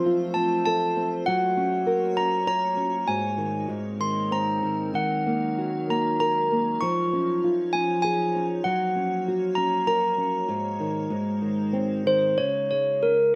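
Bright, ringing handbells with hard clappers carry the melody up front from 0.3 seconds, a slapback echo trailing each clear note in this gentle, sleepy children's lullaby in a rubato three-four lilt. Beneath them, a small, fingerpicked nylon-string guitar sits close with audible finger squeak, while an icy, crystalline glass pad with chorus and its own airy reverb holds sustained chords until 12.4 seconds. The harmony drifts through suspended and added-ninth colours before settling on a bare Db5 in this fragment cut from a longer piece, set in a moderate studio room.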